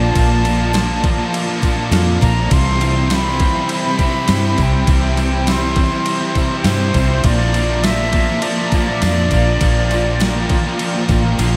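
A breathy, unsteady concert flute carries the melody through tape echo over a dreamy, hazy shoegaze and dream pop excerpt in straight 4/4, where a thumpy, crisp 8-bit drum machine and a round, foam-muted electric bass sit up front, a soft-attack sawtooth pad with chorus and tremolo holds Bbmaj7 and Cmaj7 chords, a twangy clean electric guitar plays very quiet arpeggios, three background guitars (a dark lo-fi garage guitar with reverse reverb, a double-tracked sludgy overdriven guitar and a thick fuzz guitar with lush chorus) grind out riffs, a jingly tambourine ticks very quietly, and everything is soaked in a huge ambient reverb until the kick and snare drop out at 11.4 seconds.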